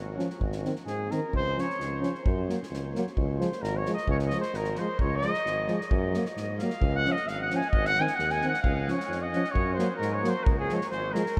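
A clear, roomy tuba opens this exuberant, wild Balkan brass band piece in Db major, laying down the bass with light vibrato from a distant spot that still sits up front. At 0.2 seconds a warm French horn with vibrato and a smooth-topped euphonium join as background accompaniment, while an acoustic drum kit played with bundle sticks adds a punchy kick and a medium-tuned snare with a small-room sound. At 0.9 seconds a mellow trumpet takes the lead and carries the solo melody up front with light vibrato and a distant, classical-style tone. The band moves at 131 BPM in a straight 2/4, cycling through Db, Gb and Ab chords. A huge ambient reverb places the whole band in a vast, echoing space. The recording is cut from a longer piece and lasts about 11.4 seconds.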